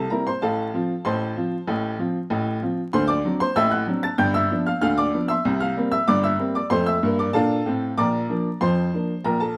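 In a straight 2/4 at 95 BPM, this cheerful, jaunty ragtime fragment, cut from a longer piece in F major and tuned to A4 = 441 Hz, features a solo upright piano with a woody, boxy tone and short sustain, placed up front and spanning G1 to A6 as it moves through F/A, D7, G7, C7, F and Bb over 9.6 seconds, with light reverb and a layer of vinyl crackle.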